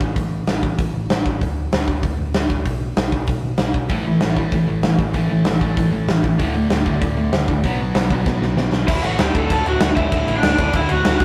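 Punk rock at 193 BPM in D major, rebellious and energetic, opens with a punchy, up-front rock kit and a round hollow-body bass before two bright, double-tracked guitars, one crunchy and one distorted, crash in with a riff at 3.9 seconds over power chords, and after a drum fill a lo-fi lead guitar through a small cranked amp takes the melody from 8.9 seconds, all in a rough rehearsal-room recording with light reverb.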